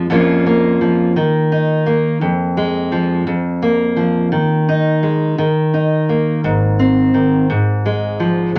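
Acoustic folk in a slow, straight 6/8 at 57 BPM, peaceful and nostalgic, cut from a longer piece. A fingerpicked steel-string dreadnought guitar sits up front with a full-bodied tone and fresh strings, moving through chords such as Bbm/F, Fm and Ebsus4 before settling on Ab and Fm/Ab. At 6.4 s a woody pizzicato upright bass enters in the background, and both parts are set in a wet small room reverb.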